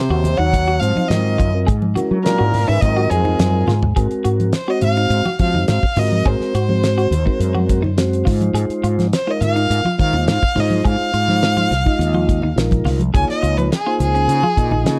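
A straight 4/4 groove at 105 BPM drives this bright, slick electric jazz fusion excerpt in Ab mixolydian, anchored by a dry, damped 70s drum kit with a fat snare and tight kick, thick-skinned congas in the background, and a round, dark fretless bass up front. A smooth, vibrato-laden violin carries the melody throughout, with a punchy, scooped trombone adding a second line until 3.7 seconds, when a drum fill leads into the violin's solo from 4.0 seconds. Twangy guitar stabs with analog chorus and a soft, flute-like tonewheel organ through a slow rotary speaker fill out the dark production and its light reverb.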